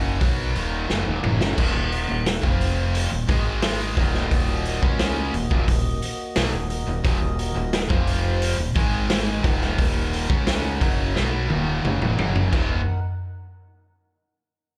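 A distorted electric guitar riff, a growling fingered bass and a mellow tonewheel organ all start together at the top of this classic rock excerpt, with a raw garage drum kit joining at 0.2 seconds and a drum fill arriving by 0.9 seconds. The mood is driving and swaggering, set at 88 BPM in a straight 4/4 in Eb minor, moving between Ebm and power chords on F, Eb and Ab. The bright, double-tracked guitar sits up front with slapback echo, while the overdriven bass adds a punchy low end. The drums have a boomy kick, a medium-tuned snare and a pumping small-room character, saturated and gritty with a rolled-off top, and a second fill lands at 11.2 seconds. Behind them, the organ holds round, dark, clean chords with audible key click through a slow rotary speaker, and the whole performance sounds like a live gig heard through the venue's PA with club reverb.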